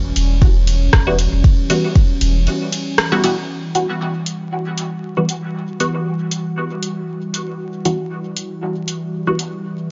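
A hypnotic, deep dub techno excerpt, cut from a longer piece, opens on a warbling, nostalgic pad holding a sustained Emadd9 chord through chorus, phaser and its own reverb, pumping under the sidechain alongside a round sine sub bass that sits up front with transformer saturation until 2.5 s. An up-front electronic kick thumps only briefly, stopping at 2.1 s, while a tape-tinged deep house kit of hi-hat, ride cymbal and rim click, re-recorded in a small room, runs nearly throughout. From 1.1 s a muted, detuned sawtooth chord stab with a wave-folded filter pluck cuts through, phased and trailing dub echo, and a break from 2.5 to 3.5 s with a band accent at 3.0 s leads into the second section, all set in a dry, gritty hardware sound with vinyl crackle and a dull top end.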